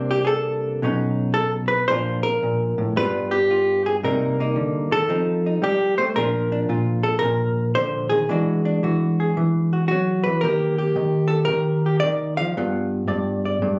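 A swung eighth-note feel in four-beat meter carries this short fragment of solo jazz guitar, cut from a longer piece. A single clean, dark electric hollow-body guitar, played with the fingers and compressed, sits up front and covers a span from G2 to F5. The first phrase moves through chords such as Cm7 and F9 before a new passage begins at 6.2 s, drifting through E9 and Eb and landing on G7 near 12.5 s. The mood is warm and sophisticated. Captured on a phone in the room, the sound carries a light club reverb and a muffled top end that stops at 8.0 kHz, giving it a candid, live-in-the-venue character.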